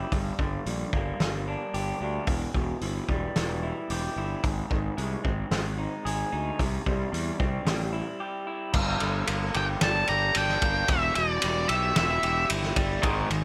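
A straight 4/4 pulse at 111 BPM drives this short, cut-down stretch of angsty, dark quiet-loud alternative rock in G dorian. The loose indie drum kit sits up front with a fat snare, punchy kick and gritty, saturated character under a rolled-off top, working through hi-hat, ride and crash. A fuzz fingered electric bass, growly and overdriven, anchors the low end, while an electric guitar through a small old amp plays lo-fi, slightly broken-up arpeggios dressed in spring reverb and digital delay. The chords move from Gm to Em, Ab and C, then a brief break at 8.2 seconds leads into a new section where an octave-fuzz lead guitar enters at 9.6 seconds with a dark, distorted melody trailed by delay. A bright, crunchy overdriven guitar riff appears only at 13.0 seconds, just before the passage cuts off, all set in a light reverb.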